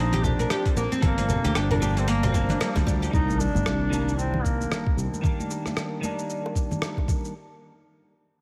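Lightly reverberant and intimate, this short cut from a longer organic downtempo piece has an earthy, mystical mood: a distant, roomy duduk sings a folk-style melody with vibrato and scooped notes through delay, while a bright, woody oud plays plectrum-plucked arpeggios in tape echo until 3.1 seconds. A twangy clean electric guitar with analog chorus, tape echo and sidechain pumping accompanies throughout, its low-pass filter sweeping from 3.1 seconds as the chords move from Bb through Gm7 to Cm7, while a growly fretless bass sustains beneath and the band hits an accent at 2.6 seconds. The swung groove comes from a soft electronic kick, a gritty, overdriven sampler-style kit of congas, hi-hat, rim click and shaker, and very quiet hard-hand congas and bongos, with an electronic impact sitting in the background at the change.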